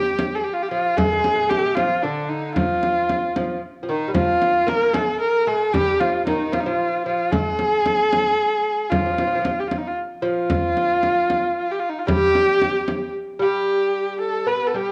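The sound is worn and warbling like old cassette tape, with pitch drift, set in a moderate recital hall reverb and a small room ambience. This hypnotic, soulful Persian modal ensemble piece, cut from a longer work, moves at 76 BPM in a straight 6/8. A single bowed kamancheh carries the melody up front, its clear, focused, slightly boxy tone shaped by vibrato and portamento. Beneath it, a fingerpicked lute plays a delicate second line lower in the mix, its nylon double strings, some doubled at the octave, sounding acoustic and warm. A close, dry frame drum played with hard hands enters at 0.2 s and stops at 13.0 s, shortly before a new passage begins at 13.7 s.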